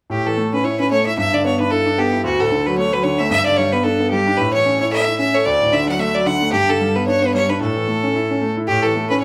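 A lightly swung 4/4 at 224 BPM drives this cheerful, lively Celtic reel in A mixolydian, cut from a longer piece, where a single bowed fiddle, biting and intense with light vibrato, carries the melody up front while a clear grand piano with open, long-sustaining tone accompanies through a chord cycle moving among A, G6, D and G, the pair set back in a wet studio reverb from 0.1 to 9.2 seconds.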